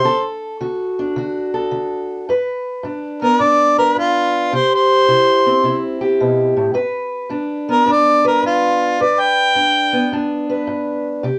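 A worn, warbling old cassette sound with drifting pitch and a modest small-room reverb colours this gritty, laid-back acoustic country blues, which swings easily in four. Up front, a warm harmonica carries the jazz-inflected melody with light vibrato, soft attacks and scooped notes, while a dark, boxy fingerpicked parlour guitar accompanies over a D, G, C, G progression. The harmonica drops out at 10.3 seconds, leaving the guitar alone until 11.4 seconds in this excerpt from a longer piece.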